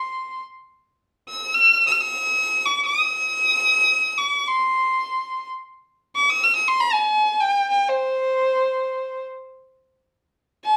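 A single bowed violin opens at once, playing solo in free time within an Arabic maqam setting on huzam, centred on C. Its tone is rich and smooth, with vibrato and an even, polished top end, and it sits up front as the lone voice. The line moves between C5 and F6-38c, and its microtonal inflections are native to the maqam. A wet studio reverb with a short tail surrounds the playing, and the room is heard from further back. The mood is warm and stately, and the violin carries the whole 10.8 seconds of this fragment, which is cut from a longer piece.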